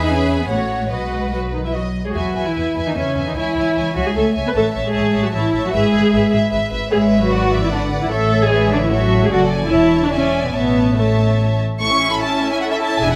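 Close, detailed microphones catch this quick, cheerful string orchestra movement in 3/4 at 150 BPM, set on a scoring stage with a moderate 1.5-second reverb. An expressive first violin section carries the melody with vibrato and portamento over a focused second violin line, smooth and even violas, cellos on the bass, and an up-front double bass section. The lively classical-period music moves from E major to A major at 6.9 s, and this short cut from a longer piece ends at 13.2 s.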